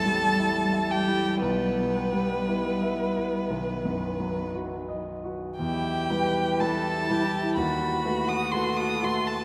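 Solemn and yearning, this slow romantic piano quartet movement in E minor drifts at 56-64 BPM with a rubato feel, as a dark, veiled con sordino violin sings the melody up front with soft-attack vibrato, a second muted violin and a shadowy, distant muted cello weave gentle inner lines, and a concert grand with deep bass underpins everything, all bathed in a vast cathedral reverb that lets each chord hang in the air.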